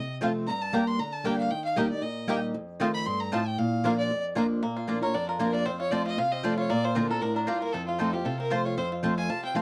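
Rustic and joyful, this swung bluegrass passage opens with a clear, earthy bowed fiddle carrying the melody with light vibrato as a solo through its first 4.6 seconds, over a boxy picked acoustic archtop guitar up front, twangy fingerpicked banjo arpeggios and woody double-string mandolin stabs, all set in a dark, warm production with light reverb.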